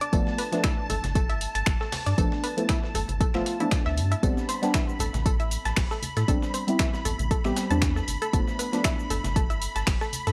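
A dark, wave-folded chord stab sits up front with phaser, cassette-tape grit and sidechain pumping, moving from G9 to Am11 and back to G9 in this smooth, hypnotic deep house excerpt at 117 BPM with a 16th-note swing. A deep electronic kick drives the groove alongside an overdriven house kit of cabasa, finger snaps and hi-hat, a gritty sampler-style breakbeat kit with hi-hat, snare and tambourine in the background, and low-tuned congas that join at 0.9 s. A round sine sub bass anchors the low end, while a detuned sawtooth analog pluck spins arpeggios through tape echo and a silky, vintage string machine holds a soft, high texture, all within a dry, gritty hardware sound and light reverb.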